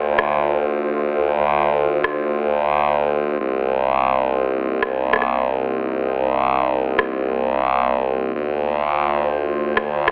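Glitch hop with a swaggering, funky swing: an overdriven electronic rim click snaps up front from 0.2 seconds over a compressed, formant-swept sawtooth wobble bass and a warbling, detuned tape-like pad with vintage sampler grit, moving from Dm7 to Cm7 and back, all cut from a longer piece and framed by light reverb and a telephone-like sound.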